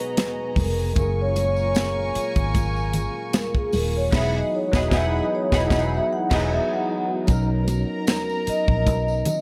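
A soft-mallet vibraphone carries the melody in this smooth slice of lush 1970s-style soul, its ringing, metallic tone touched with slapback echo and featured as a solo until 7.3 seconds. Behind it, a rich, reedy chamber string section adds a bowed second line, a bell-like tine electric piano comps with ensemble chorus, and a mellow tonewheel organ with key click and slow rotary speaker holds sustained chords in the background until 7.3 seconds. A tight, polished funk kit sits up front with a gently swung 16th-note feel, joined by a dark, punchy muted fingered bass, damped congas, a faint jingly tambourine, and a band accent from 4.1 seconds.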